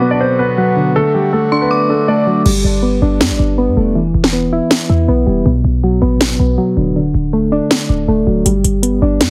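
Heavily compressed with a radio-like sound, light reverb and digital ambience, this dreamy, triumphant trap excerpt in G major moves at 160 BPM with a half-time feel. In the opening section, a filter sweep washes over a warm, long-sustaining baby grand piano melody with delay, an eerie, inharmonic detuned FM bell with chorus and tremolo, and reedy, smooth accordion chords, all over soft, round, warbling electric-piano-like synth keys that stay up front throughout. At 2.5 seconds a punchy, tight 808-style bass and an overdriven electronic trap kit with a sharp snare and crash arrive up front, while the metallic hi-hats stay muted until 8.5 seconds, as the chords pass through Gadd9, Em, Bm and D before resolving to G.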